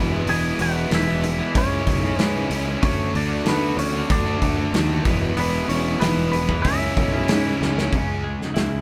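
Restless and anthemic, this short cut from a longer quiet-loud alternative rock track moves at 94 BPM in a straight 4/4, built on a chord cycle of E, C#m and D. A bright, compressed fuzz guitar and a scooped high-gain guitar sitting in the background both play the riff from the start, alongside a growly, overdriven fingered electric bass. A clean, twangy electric guitar carries the melody over the top from 0.3 seconds, its tone warm against the distorted rhythm parts. The loose indie drum kit sits up front with a tight kick, a medium-tuned snare and hi-hat, its small room pumping, and a drum fill at 7.6 seconds closes the section. As the fuzz guitar drops out at 7.9 seconds, a bright twelve-string electric guitar picks clean arpeggios, all of it captured as a band playing live in one room with moderate reverb.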